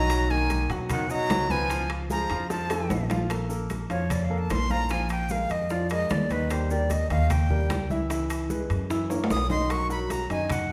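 This Afro-Cuban jazz excerpt moves at a lively 150 BPM in a straight 4/4, with a sophisticated feel. A breathy, reedy metal flute carries the melody up front with a crisp, chiffy attack. A brilliant, forceful trombone adds a punchy second line with light vibrato and scooped notes until it stops at 3.1 s, and from 3.3 s the flute takes a solo over chords moving from Eb through Dbm7 and Gb6 to Bmaj7. A clear, intimate upright piano, its action noise audible, supplies woody accompaniment, while a warm pizzicato upright bass with steel strings sits up front. Thick-skinned congas play very quietly, with tight, high-tuned bongos, ringing metal-shell timbales and grainy maracas in the background; two drum fills punctuate the groove, and the whole ensemble sits in a wet recital-hall reverb.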